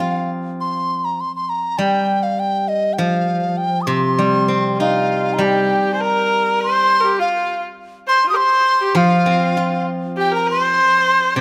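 A reedy large dizi and a steel-string zither open this wistful, tender fragment of Chinese traditional chamber music. The dizi carries the melody with a buzzing membrane tone, a crisp chiff on its attacks and vibrato. Beneath it, the zither plays accompaniment with fingerpicks, its silvery strings ringing. The pulse sits around 100 BPM in 2/4, but the feel is rubato and free in the C yu mode. At 4.8 seconds a single bright erhu joins with a second line, its airy, earthy bowing marked by light vibrato and sliding portamento. All three instruments are close and detailed, set in a moderate recital hall reverb that lets each one sound intimate yet spacious.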